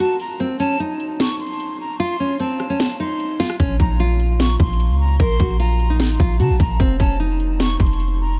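A light reverb surrounds this brooding, dark trap excerpt, which sits at 150 BPM in a half-time 4/4 feel in B-flat harmonic minor. A full-bodied, fingerpicked nylon-string guitar carries the melody up front, with audible finger squeak, a low-pass filter and a diffuse ambient delay. Above it, a breathy metal jazz flute plays a second line in a high register, with vibrato, a soft attack, lifted highs and the same diffuse ambient delay. The electronic trap kit is overdriven and up front, with a hard-clipped kick, sharp snare, rim click and metallic hats that sound re-recorded in a small room, and it drops out at 8.1 seconds. After an opening break with unharmonized parts, a deep, boomy, sine-like 808-style bass arrives at 3.6 seconds with a fast, decaying attack and a mellow, warm tone, as the harmony settles on B-flat minor before moving to an F power chord.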